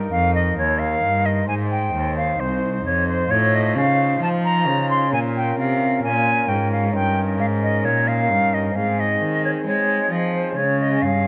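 Flowing and solemn, this baroque-style sonata movement with continuo moves at a steady 66 BPM in 4/4, and it is cut from a longer piece. A pure, crisp-edged silver concert flute carries the expressive vibrato melody up front from 0.1 seconds, while a rich, bowed solo cello holds the bass line and a warm principal-stop pipe organ with a touch of chiff fills in the accompaniment. Light reverb surrounds the ensemble as the harmony passes through Eb, Ab, Bbm and Eb7/G before settling toward Db.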